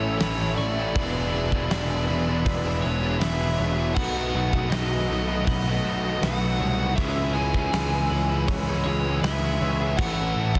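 A hazy, dreamy shoegaze and dream pop passage opens with a growly fuzz bass up front, a biting lead guitar melody soaked in overdrive and digital delay, and a layered bed of crunchy overdriven guitar riffs. One riff trails a reverse reverb, and a hollow-body semi-hollow guitar riff shimmers with ensemble chorus. A very quiet, flute-like warbling pad and clean, warm twelve-string arpeggios float above, while a big, dark-toned rock drum kit with a punchy kick joins at 0.2 seconds, all pressed into a dense, heavily limited modern master.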